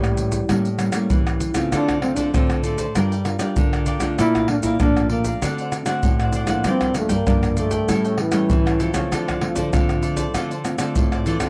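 Up front, a compressed, saturated batch of maracas, pandeiro, tamborim and hard-hand playing over a deep surdo drives this lively, nostalgic samba-and-choro fragment in D minor at 97 BPM, cut from a longer piece. A dark, breathy trombone with light vibrato and a soft attack carries the jazz-style solo melody from a distant, roomy place, while two fingerpicked classical nylon-string guitars fill in: one plays the accompaniment, and the other, full-bodied and in the background, plays the bass line. A crisp, picked cavaquinho joins at 1.7 seconds, and the whole is set in a dry, close 1970s-style studio sound with light reverb.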